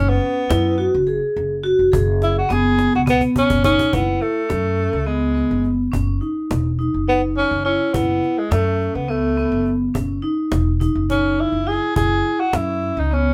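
Intricate and driving, this excerpt of progressive instrumental band music in 7/8 at 210 BPM (eighths) in F# dorian features a breathy, whispered tenor saxophone carrying the melody up front with vibrato and scooped notes, taking a solo from 0.0 to 3.9 s. A cajon drum fill starts at 2.2 s, and the same cajon stays close and dry, with faint snares, through the rest of the excerpt. A hard-mallet vibraphone rings out metallic arpeggios, and a pizzicato upright bass gives a woody steel-string foundation. The band plays live together in one room under a moderate studio reverb.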